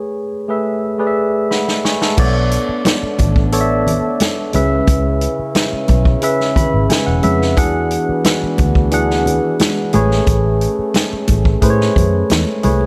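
A straight 4/4 groove at 89 BPM drives this bittersweet, cinematic fragment of lush 1970s-style soul in B dorian, tuned to A4 = 435 Hz. It opens on a break with a barky tine electric piano alone, clean through a combo amp with subtle chorus, until a vintage drum kit enters with a fill at 1.5 s. At 2.2 s the full band settles in. The acoustic kit sits up front with a punchy kick, medium-tuned snare, hi-hat and crash, while a dark, foam-muted fingered electric bass adds a round, amped low end. Behind them a distant French horn section holds mellow sustained chords with light vibrato, and soft-handed congas with thick skins add a band-limited texture in the background. The electric piano steps forward with a fill at 6.2 s as the harmony moves through Bm9, C#m7 and E9 before returning to Amaj9, and the mix sits in light reverb and small-room ambience.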